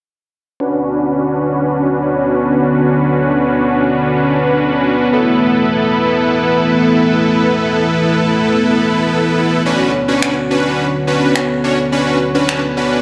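At 0.6 s a fat, bold polysynth and a shimmering, retro pulse-width pad arrive together, both up front, opening this bittersweet yet confident slice of dance-pop cut from a longer piece. The polysynth carries the accompaniment with detuned sawtooth tones, a fast attack and a chorused, bright edge. The pad holds sustained chords with a slow attack, long release, sub octave and ring-modulated colour that keep it mellow and evolving. A filter sweep runs through the opening section as the harmony moves from Bmadd9 to Esus4, and the second section begins at 9.7 s back on Bmadd9. At 10.2 s layered electronic finger snaps appear in the background, re-recorded in a small room, while a long plate reverb soaks the mix in a dreamy haze.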